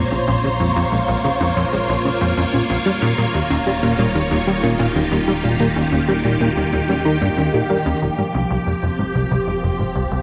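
A swirling, bright string machine holds sustained chords up front, with a phaser and ensemble chorus, over a punchy, funky analog bass riff and a fat, thick bass underneath, while a warbling, lo-fi pluck spins mellow arpeggios through chorus and delay in the background. This expansive, hypnotic slice of sequencer-driven space music moves at 93 BPM in a straight 4/4, shifting from Bbm7 to Eb7 and then to Fm at 8.0 seconds. There the pluck stops, and a very quiet, pulsing, detuned texture enters as the echo-heavy mix sits in a long plate reverb.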